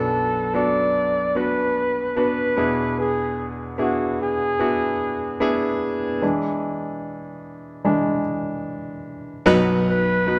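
Emotional and heartfelt, this pop excerpt pairs a soft-attacked, jazz-style flugelhorn melody, sung with vibrato yet set distant in the room, with a clear, polished baby grand piano up front that moves from Bm7 to E7 and takes a solo turn from 6.2 to 9.5 seconds before settling on B, all within a dark production and a moderate concert-hall reverb.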